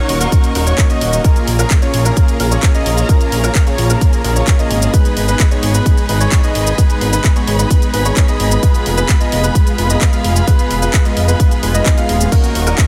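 Festival progressive house at 130 BPM with a powerful, emotional mood, built on a punchy, up-front electronic kick and a layered house kit of crash, handclaps, hi-hat and shaker beneath a fat, nasal analog bass, while a huge, detuned supersaw riff and open grand-piano arpeggios, both carrying sidechain pumping and tape echo, ride over dark, bowed strings sustaining chords in the background through Ebm7, Bbm7, Abm and Fdim, with a very quiet electronic swell appearing at 11.6 seconds near the end of this cut from a longer piece.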